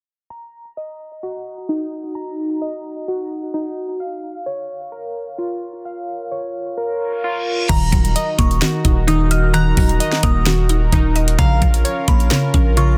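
A dense, heavily limited modern master with digital ambience and a low-pass filter frames this melancholic, eerie trap excerpt in Eb minor at 130 BPM in half-time, where bright, evolving glassy digital keys play chorused, tape-echoed arpeggios under a filter sweep from 0.3 seconds until a reverse cymbal at 7.2 seconds ushers in, at 7.7 seconds, an up-front trap drum kit with a knocking kick, sharp snare and metallic hats, a deep, long sine 808-style bass, a woody, round mallet-like synth pluck, a smooth, detuned warm analog pad, and a crystalline, warbling synth bell in the background.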